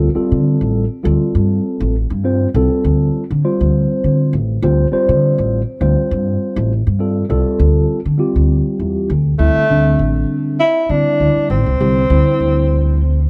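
A lightly swung sixteenth-note feel at 100 BPM in 4/4 drives this funky, slick jazz fragment in D minor, tuned slightly low to A4 = 439 Hz. A woody, pizzicato upright bass on steel strings sits up front from the start. Beside it, a mellow, clean tine electric piano heard through its built-in speakers comps on Dm7, colored by a phaser. At 9.4 s the harmony shifts to D9sus4, and a dark tenor saxophone enters with a roomy, vibrato-laden solo line in a jazz style, playing until the close at 13.3 s, while the electric piano drops out at 13.0 s. The sound is dry and close, in a 1970s-style studio manner, with light reverb and a small room ambience, and the clip is cut from a longer piece.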